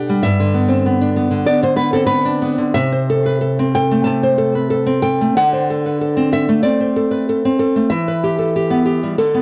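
A fingerpicked nylon-string guitar sits up front in this short, nostalgic cut from a romantic classical solo piece in G major, played rubato around 94 BPM and tuned to A4 = 444 Hz, moving through G, Am/C, D7 and Em with audible finger squeaks, a moderate studio reverb, and the worn, warbling pitch drift of old cassette tape.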